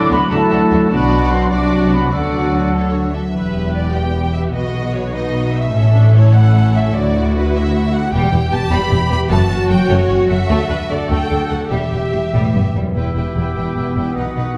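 Cinematic orchestral excerpt in 6/8 at 100 BPM, swashbuckling and determined, where a lush, vibrato-rich violin section carries the melody over a second violin line, a rich viola section, and cello and double bass sections on the bass, with a mellow, ringing concert harp arpeggiating throughout. A pure small flute group sounds from 0.0 to 2.7 seconds, and a distant oboe, clear clarinet, dark, very quiet French horn chords and clear trumpet stabs sound from 0.0 to 3.1 seconds. These winds and brass return at 13.0 seconds, with the oboe coming back slightly earlier at 12.9 seconds. Everything is set back in a reverberant recital hall as the harmony moves into E dorian.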